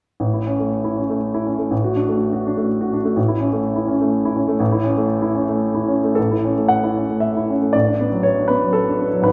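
A clear, natural grand piano plays alone in a passionate, lyrical romantic character piece in A major, moving in a rubato 3/4 at around 101-129 BPM across a range from G#1 to F#5, up front yet heard from further back in a recital hall whose wet reverb blooms around it, shifting at 6.2 seconds into a new section that reaches a Bm7/A chord before this excerpt of a longer work breaks off at 9.3 seconds.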